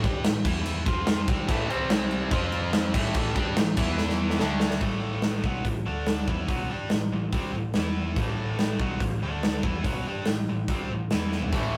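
A big rock drum kit with a punchy kick and bright cymbals sits up front, driving this aggressive hard rock cut in A minor at 143 BPM, with fills around 4.0 seconds and again near the close. A tight, bright distorted guitar riff runs throughout over a growly, overdriven picked bass, while a second scooped, compressed distorted guitar adds its own riff from 1.5 to 4.8 seconds before returning briefly at the end. The rough rehearsal-room sound carries light reverb and warm saturation, and the chords move through power-chord shapes on A, D, E, F and C alongside A minor.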